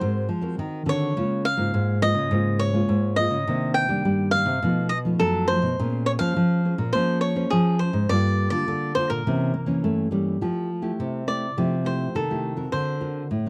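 Lively and playful, this short cut from a longer samba and choro piece moves at 104 BPM in a straight 4/4, with a crisp, picked cavaquinho carrying the melody up front over a fingerpicked nylon-string guitar whose fresh strings give the accompaniment its sparkle, while a second, full-bodied nylon-string guitar holds down the deep bass with audible finger squeak. Rich jazz-tinged harmony such as Ab9, B7#11 and C7b9 colours the first stretch before the music shifts to Fmaj9 at 10.4 seconds, where the cavaquinho takes a solo. The dry, close 1970s-style studio sound keeps every part intimate and present.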